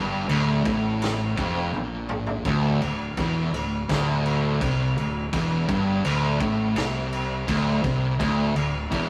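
A double-tracked fuzz guitar leads this short cut from a longer stoner and doom metal piece, grinding out a distorted, compressed riff between D2 and C3 from the opening D5 chord, sitting up front in the mix. Beneath it, a fingered electric bass adds a dark, round, overdriven fuzz tone with tube saturation, holding down the bottom end in D minor. A raw garage drum kit comes in at 0.3 seconds with a boomy kick, a medium-tuned snare, toms and crash cymbal, its gritty, saturated sound mid-forward with a rolled-off top, and it plays a fill from 1.7 to 2.5 seconds. The mood is hypnotic and heavy at a steady 84 BPM in a straight 4/4, tuned slightly down to A4 = 435 Hz. A moderate stone room reverb and a rough rehearsal-room character with tube saturation give the whole performance a close, live-in-the-room feel.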